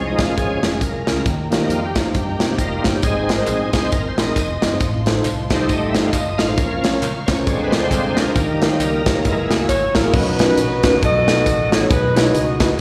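A bright, shouting tonewheel organ leads this jubilant, soulful uptempo gospel excerpt, its lightly overdriven tone turning through a slow rotary speaker and chorus vibrato as it solos over sustained chords until 10.1 seconds. Beneath it, a punchy drum kit sits up front and a round, dark fingered bass carries the swung groove, with a clean tine electric piano with slapback echo, lush bowed strings in the background, and compressed tambourine and handclaps joining at 3.0 seconds. At 9.7 seconds a clear saxophone section with light vibrato takes the melody, and the whole band is heard through a venue's PA in recital hall reverb.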